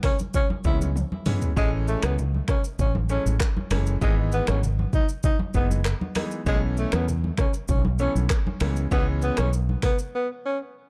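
A dark, warm production with digital ambience frames this breezy, joyful afrobeats excerpt at 98 BPM in a straight 4/4, set in E major and cut from a longer piece. A breathy tenor saxophone carries the melody from the start, soft-attacked and whispered, with vibrato, scooped notes and a touch of delay giving it an intimate, jazz-style solo voice. Underneath, an up-front deep house drum kit, electronic, layered and overdriven with a deep kick, combines finger snaps, handclaps, hi-hat, rim click, shaker and toms, with a drum fill at 1.0 seconds, while medium-tuned acoustic congas ring softly in the background. A round, punchy fretless electric bass and a brilliant, polished concert grand piano, with audible action noise, join at 0.6 seconds, moving through C#m7, Amaj7, Emaj7/G# and B9sus4 before returning to C#m7. A short break arrives at 10.1 seconds as the parts fall away.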